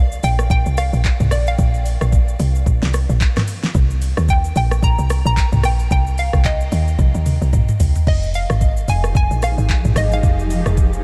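Late-night and soulful, this amapiano excerpt at 111 BPM in F minor rides a swung groove where a woody, punchy log drum bass and an up-front R&B kit with knocking kick, fat snare, metallic hats and vintage 12-bit sampler grit carry a hollow, bouncy square pluck melody treated with chorus and diffuse ambient delay, with a drum fill at 7.0 seconds and a blurred, detuned granular pad pumping in at 9.0 seconds as the chords move from Bbsus2 through Cm7 to Fm9.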